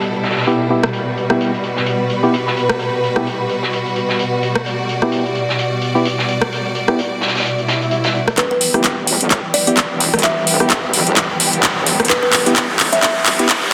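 Lush, focused strings sustain chords in E minor over a loose acoustic kit with a fat snare, opening this gritty, aggressive 129 BPM bass house excerpt with a swung sixteenth feel, as hollow organ stabs with chorus and dub echo pump under a filter sweep and an up-front house kit of metallic hats, handclaps and rim clicks drives ahead, until a background swell from 7.6 seconds gives way at 8.4 seconds to a build-up and drum fill where a woody kalimba melody, a heavy, detuned wobble bass and a punchy electronic kick join, all washed in hall reverb and a dense, heavily limited master.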